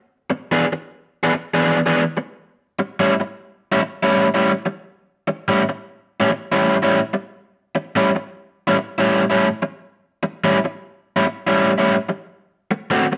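An overdriven electric guitar comes in at 0.3 seconds over an E7 chord, its picked, compressed tone sitting up front as it solos through this soulful, rollicking blues fragment in A mixolydian. The chords move to A7 at 2.6 seconds and D7 at 12.5 seconds, all at a swung 97 BPM in 4/4. Light reverb gives the live, one-room recording a sense of space around the guitar.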